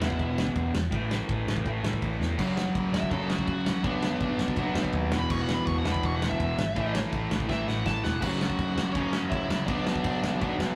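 Urgent and aggressive, this punk rock excerpt from a longer piece is driven by a bright, compressed distorted electric guitar riff and a loose indie drum kit with a fat snare, punchy kick and dark cymbals, both up front, over a growly overdriven picked electric bass. A bluesy overdriven lead guitar with a dark, distorted tone and digital delay solos through the opening, with a drum fill at 2.2 seconds, and a biting overdriven guitar joins the riff in the background from 2.4 seconds. A longer fill leads into a new section at 8.2 seconds, and the whole take has the rough, tube-saturated feel of a rehearsal room with light reverb.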